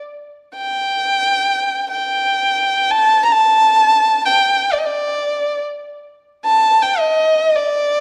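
A moderate recital-hall reverb surrounds this hypnotic, longing Arabic maqam fragment, cut from a longer piece, where a single dark, woody bowed violin enters up front at 0.6 s and plays solo in free time with vibrato until 8.0 s.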